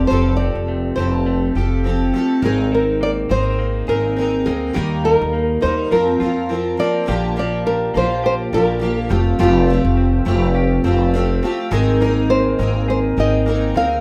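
Sunny and heartfelt, this acoustic pop excerpt moves with a gentle swing in 4/4. A dark, fingerpicked nylon-string guitar carries the melody through a digital delay, while a bright, double-tracked steel-string acoustic with fresh strings and audible finger squeak is picked up front beside a woody pizzicato upright bass. A compressed, direct-recorded clean electric guitar adds quieter arpeggios, all sitting in a wet studio reverb with the rough feel of a home demo and a shift to a new section at 7.1 seconds.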